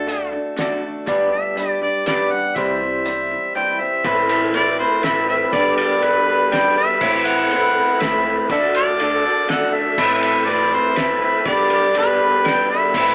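A mellow harmonica sits up front and carries the melody with vintage, scooped notes across this short, dusty and wistful folk rock and heartland rock excerpt, moving at 121 BPM in 3/4 in A dorian. Beneath it, a bright, boxy acoustic guitar is picked in a swing style with audible finger squeak, while an electric guitar through a small old amp plays a slightly broken-up, compressed riff bathed in spring reverb. A cloth-damped, thuddy drum kit with dark cymbals, a fat snare and a tight kick sounds gritty and muffled, and a woody, growly upright bass stays in the background. At 4.1 seconds a very quiet, round tonewheel organ enters with sustained chords through a slow rotary speaker, as the harmony settles around Amadd9, G and D. The whole band plays live in one room with moderate reverb and an AM radio character that gives the piece a faded, lo-fi glow.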